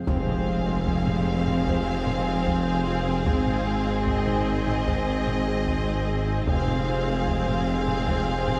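A moderate scoring-stage reverb gives this short cut from a longer hybrid orchestral and electronic film cue a vast, futuristic sense of space, set at a steady 75 BPM in 4/4 in F minor. A shimmering, retro pulse-width pad with chorus and a slow attack sustains chords from the very start, while a lush studio violin section carries an expressive, vibrato-rich melody high above. A smooth-topped symphonic violin section holds a second line, and an intense, clear viola section supplies accompaniment. Underneath, a distant, dark French horn section holds chords that stop at 8.4 seconds, and a soft, ringing harp-like synth pluck plays mellow arpeggios with a filter sweep. The low end stacks a background tuba with light vibrato, a deep, clean sine sub bass, a focused cello section and an even, very quiet double bass section, while close, dry taiko drums struck with hard sticks sit in the background. 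A very quiet electronic impact sounds from 0.1 to 3.3 seconds as the harmony moves from F minor to A-flat and back to F minor.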